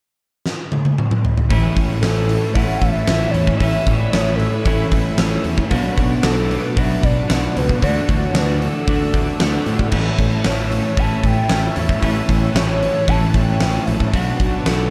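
Shoegaze-leaning dream pop rock at 114 BPM in A major, dreamy and wistful, opening with a drum fill on a big-room kit with a fat snare and punchy kick before the full band arrives at 1.5 seconds, moving through A, Bm7 and Dadd9. Thick fuzz and crunchy overdriven guitars, the latter trailing reverse reverb, churn their riffs in the background beside a growly, overdriven fingered bass, while a very quiet clean semi-hollow guitar picks arpeggios under a silky vintage string machine treated with phaser and ensemble chorus. At 2.0 seconds a pure, round sine lead with portamento, chorus and analog delay sings the melody over a dark, dry production, in a clip cut from a longer piece.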